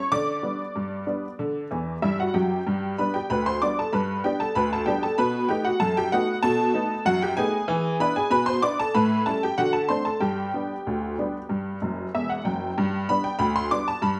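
In a straight 2/4 at 95 BPM, this playful, cheerful ragtime excerpt in G major features a solo honky-tonk upright piano, detuned, jangly and bright, placed up front in a small room with moderate reverb, spanning E1 to D6 and dropping in fills at 1.7 and 11.8 seconds as the harmony moves from G through B7, E7, A7 and D7 back home to G.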